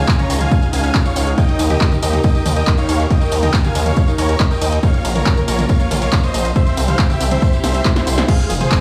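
A huge, bright supersaw lead carries the euphoric melody with delay and sidechain pumping through this driving uplifting trance drop at 139 BPM, over a punchy, tape-toned electronic kick up front, a gritty, nasal, sidechain-pumped synth bass, lush bowed symphonic strings pumping on sustained chords in the background, a round, detuned analog pluck weaving pumped arpeggios with chorus and delay, a punchy analog drum machine of snare, handclaps, hi-hat, ride, crash and toms that plays a fill at 7.6 seconds before a band accent at 8.2 seconds, and a jingly tambourine, with the mix sitting in a large studio reverb heard through a big sound system in a bare room.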